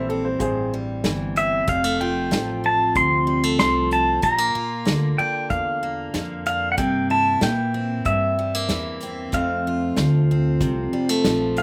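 A straight 4/4 pulse carries this sunny, heartfelt honky-tonk and classic country excerpt, where a twangy, clean pedal steel guitar with slapback echo, fingerpicks, slide and volume swells sings the melody up front over a full-bodied, fresh-stringed dreadnought acoustic guitar with audible finger squeak and a thumpy, woody pizzicato upright bass on gut strings, while a vintage upright piano with audible action noise adds a brief second line only until 0.7 seconds and an acoustic drum kit of hi-hat, tight kick and medium-tuned snare, played with bundle sticks, enters at 0.4 seconds, all heard in a dry outdoor sound.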